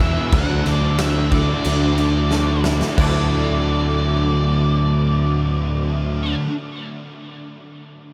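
A hazy shoegaze and dream-pop passage at 90 BPM in D major opens with a growling, overdriven bass up front, a stack of riffing guitars and an octave-fuzz lead that carries a wistful melody through diffuse ambient delay. Beneath it lie a thick fuzz guitar with ensemble chorus, a warm overdriven guitar with reverse reverb, a double-tracked crunchy guitar and a very quiet, scooped semi-hollow guitar fingering clean arpeggios over a Dadd9 chord. A huge arena drum kit with a fat snare and punchy kick enters at 0.3 seconds, plays a fill from 2.3 seconds and stops at 3.1 seconds, all in a dreamy mix soaked in vast reverb.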